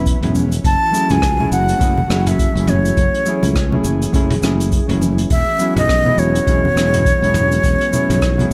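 Smooth and relaxed, this short sunset chillout excerpt in F# minor moves at 103 BPM with a 16th-note swing, as an up-front wooden flute with vibrato and tape echo carries the melody over a dark, clean hollow-body jazz guitar, also echoed, and a breathy, chorused pad sustaining E69 and F#m9 chords in the background, while a bright, growly fretless electric bass with tube saturation, a deep analog electronic kick, a dark brushed vintage kit with hi-hat, rim click, shaker and toms, and distant, very quiet congas entering at 0.4 seconds fill out the groove in a small room with light reverb.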